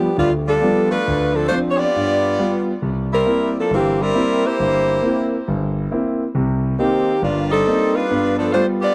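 A dry, close 1970s-style studio sound with light small-room reverb frames this energetic, joyful swing jazz excerpt at 136 BPM, where a tight saxophone section with light vibrato, soft attack and tape echo carries the melody up front over a clear concert grand piano of deep bass and long sustain, both playing throughout its 8.9 seconds as the harmony moves from G7 through Dm7, C7 and Cm7.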